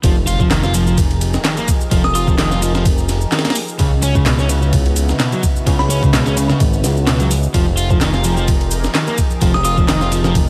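This gritty, swaggering breakbeat excerpt opens mid-drop at 128 BPM in F minor, with a sampler-style breakbeat kit, a fat analog bass, a crunchy overdriven electric guitar riff, and electronic shaker and handclaps sounding at once, while a very quiet electronic impact sits underneath. The kit is compressed, pitched up and tape-saturated, with a thumpy kick and a medium-tuned snare re-recorded in a small room and placed up front, and its 16ths carry a light swing. The thick sawtooth-and-triangle bass is detuned and wave-folded, with a fast attack and a filter sweep, and it sits up front alongside the drums. The picked guitar riff echoes through a digital delay, and the layered, overdriven shaker and claps come from a large room. A lush, detuned unison pad enters at 0.7 seconds in the background, sustaining Fm11 and Dbm11 chords through chorus, phaser, 12-bit sampler grit and sidechain pumping. 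From 2.0 seconds a glassy FM synth bell adds brief, crystalline high notes through chorus, phaser, a small-speaker tone and delay, over an otherwise dry, loud mix.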